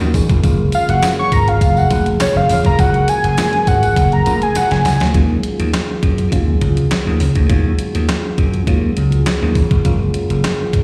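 Slap bass, a background FM electric piano with tremolo and a mellow French horn section sound together from the start of this early-eighties boogie funk clip, a danceable, funky groove in Eb minor at 102 BPM in a straight 4/4. The slap bass is bright, growly and punchy up front, while the clean 12-bit drum machine brings a thumpy kick, fat snare, hi-hat and handclaps with a sampler-style edge, with a jingly tambourine tucked in behind until about 5.1 seconds. From 0.7 seconds a fat analog lead takes a solo high above, its detuned sawtooth tone thickened by a sub octave, vibrato, chorus and slapback echo, and it stops at 5.0 seconds as a drum fill leads into the second half. The harmony moves from Gbmaj9 to Ebm11 there, with the dark, decaying electric piano carrying a slapback echo of its own and the distant, roomy horns holding tight sustained chords. The whole is heard as a live gig through the venue's PA, with recital hall reverb lending space, and the clip is cut from a longer piece.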